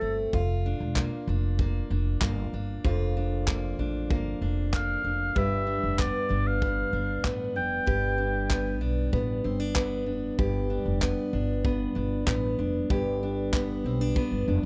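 A clear oboe with vibrato and a classical bearing carries the melody, sounding a brief note at the very start before returning from 4.7 to 8.8 seconds. This short acoustic pop passage, cut from a longer piece, has a sunny, carefree mood at 96 BPM in a straight 4/4, with the harmony moving from Bb to G. A bright picked steel-string acoustic guitar with fresh strings and audible finger squeak plays accompaniment throughout, while a woody, dark pizzicato upright bass holds the low end. A natural country drum kit in a studio room enters at 0.3 seconds with handclaps and a punchy kick, closing with a drum fill from 14.2 to 14.7 seconds. Every part sits up front, captured with close, detailed microphones and little reverb for an intimate, present sound.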